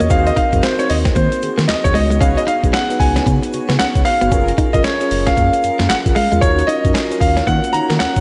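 A lush hall reverb gives this short cut of new jack swing R&B a big arena sound, with the top end capped at 10.4 kHz. At 114 BPM in 4/4 with a swung sixteenth feel, the mood is slick and punchy as the harmony moves through Ab7/Eb, Db7sus4, Gbmaj9 and Ebm7. Up front, a gritty, pitched-down sampler-style kit with a thumpy kick, high-tuned snare, handclaps and hi-hat sits beside a clear, intimate grand piano that carries the melody with its action noise audible. A deep analog bass blends sawtooth, sine and triangle tones, while a mellow tine electric piano plays accompaniment as if through built-in speakers. In the background, a bright, direct-recorded clean guitar plays a compressed, picked riff with analog chorus, dark, detuned synth brass adds stabs with vibrato, and a grainy acoustic egg shaker sits close and dry. Slapback echo colours the grand piano, electric piano, guitar and brass throughout the excerpt.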